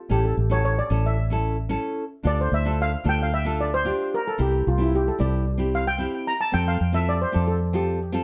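Bouncy and carefree, this short calypso excerpt features a mellow, shimmering double-seconds steel pan, struck with soft rubber sticks and touched with digital delay, carrying the melody up front from 0.1 to 7.9 seconds. Beneath it, a fingerpicked nylon-string guitar with a full-bodied classical tone and audible finger squeak supplies the accompaniment. A foam-muted fingered electric bass, direct and amped, sits prominently underneath as the chords move from A through Dm and C to F, all in a light reverb.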